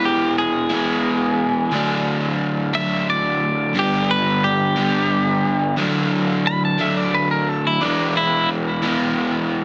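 A twangy, clean electric guitar and a crunchy, overdriven rhythm guitar start together in this short rock fragment, cut from a longer piece and set in 6/8 with a straight feel. The twangy guitar carries the solo melody, its compressed, picked tone bright and trailed by a digital delay, before it drops out at 8.5 seconds. Beneath it, the double-tracked overdriven guitar plays a low riff up front and rings on alone until 9.6 seconds. The harmony moves from E to D, G, back to D and then returns to E, giving the passage a cathartic yet bittersweet pull. A moderate studio ambience surrounds the guitars, and the dense, heavily limited modern master keeps the sound full and pressing.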